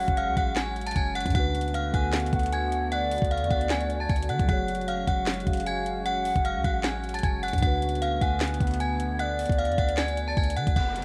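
A bright, inharmonic FM bell rings up front over a brooding, menacing half-time trap groove at 153 BPM, alongside a gliding portamento lead, a mellow tine electric piano, a warbling lo-fi pad, a boomy 808-style bass and a knocking trap kit with sharp snare, handclaps and metallic hats, most of them colored by cassette-tape grit as the chords move between F#sus2 and D6 before a downlifter enters at 10.8 seconds.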